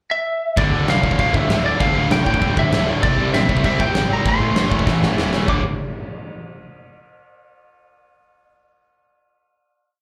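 A twangy, slightly broken-up lead guitar with slapback echo carries an up-front, motif-based melody through this aggressive, angry punk rock piece at 195 BPM, joined after a short pickup at 0.6 s by a big rock drum kit with a fat snare and punchy kick in a pumping room, a growly fuzz bass driving eighth notes in the background, a cranked stack guitar and a tight distorted guitar with slapback echo pushing eighth-note power chords, and a double-tracked crunchy guitar ringing chords, the mix heard as a live club gig through the venue's PA, until a drum fill at 4.9 s leads into a final D5 chord at 5.5 s.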